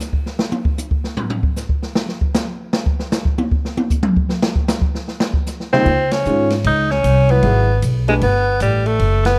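A relaxed, playful swing and bop fragment opens with a drum solo on an acoustic kit, its dark cymbals, medium-tuned snare, toms and boomy kick sounding natural and up front in a studio room. At 5.7 seconds a clear, punchy tenor saxophone with light vibrato and a smooth top takes a forceful solo. A woody upright piano comps until 8.2 seconds, while a growly pizzicato upright bass with steel strings holds the low end, and the band hits shared accents over a dark production with light reverb.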